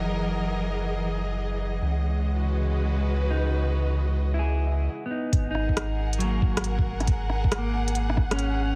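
Wistful and rainy, this future garage excerpt opens on a gritty, pumping bowed string section holding sustained chords over a round, deep dub sub bass and a faint, breathy wind-like tuned noise, with a dark clean electric guitar joining at 3.3 seconds through sidechain pumping and analog delay, before a brief break gives way at 5.3 seconds to a muffled, thumpy kick and smooth hi-hats with rim clicks set in small-room ambience within an echo-heavy mix.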